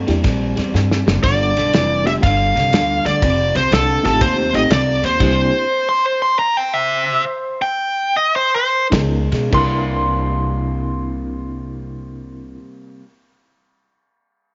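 Gritty and laid-back, this short electric blues shuffle in C mixolydian swings in 4/4 at a tempo that drifts between 97 and 121 BPM, slowing down from 5.2 to 9.5 seconds. A bright, twangy electric guitar through a small old amp plays a slightly broken-up riff, joined by a woody, pizzicato upright bass and a reedy electric piano carrying medium tremolo through its built-in speakers. The acoustic drum kit, with dark cymbals, a punchy kick and a medium-tuned snare in a small room, plays a groove of kick, snare, ride and crash, with a fill just before the lead enters. Up front, a smooth overdriven lead guitar carries the melody from 1.2 to 8.9 seconds over changes moving through C7, G7 and F7, landing on a Db9 before returning to C7. At 9.5 seconds a clear, worn and slightly detuned upright piano enters on a high C with tape echo and long sustain, as the guitar, bass and electric piano play on under light reverb and studio ambience.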